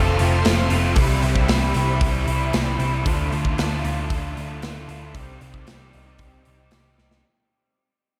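A shoegaze and dream pop take on rock, this short excerpt drifts along at 115 BPM in a straight 4/4, blissful and hazy as it fades out from the first moment. A swirling, vintage string machine sits in the background with soft-attack sustained chords, colored by ensemble chorus and phaser, but it stops at 3.0 seconds. Beneath it, a very quiet, twangy guitar through a small old amp picks lo-fi, slightly broken-up arpeggios, while two overdriven guitars carry riffs, one biting and set back with reverse reverb, the other thickened by ensemble chorus. A dark, round, foam-muted bass sits up front, and a big acoustic rock kit with a punchy kick and medium-tuned snare enters at 0.2 seconds, closing with a drum fill at 7.0 seconds. The chords move from F to C, then Dmadd9 and Cm, all wrapped in light, small-room reverb.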